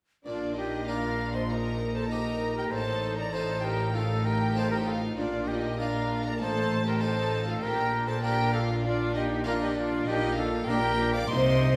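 A pure, expressive concert flute sits up front, carrying the melody with soft-attacked, vibrato-rich tone through this festive, lively passage cut from a baroque-style concerto movement in Bb major, moving at 98 BPM in a straight 4/4. A rich chamber violin section shares the melody higher up in bowed, expressive ensemble playing, while a smooth, even studio violin section adds a warm second line beneath it. A brilliant, full French-style harpsichord plucks its accompaniment in the background alongside a smooth, even viola section. The bass is shared by an expressive cello section and a distant, warm double bass section, both bowed with soft attacks. The harmony moves from Bb through Eb/Bb and F7/A, returning to Bb twice before reaching Gm/Bb, with the whole ensemble playing from 0.3 to about 11.8 seconds. It is all heard from further back in a wet recital hall, whose reverb lingers for about 1.9 seconds.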